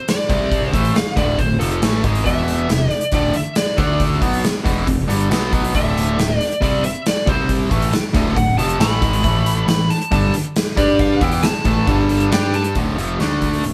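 A moderate stone-room reverb surrounds this driving, swaggering classic rock excerpt, played live by a band in one room and cut from a longer piece. A dark, smooth overdriven lead guitar takes a solo from the start to 12.8 seconds over a gated 80s drum kit with a punchy kick, medium-tuned snare and hi-hat sitting up front. Two bright, picked distorted guitars drive the riff, one tucked into the background, while a round, fuzzed picked bass anchors the low end as the chords move through C5, D5, E5, F5, G5 and A5.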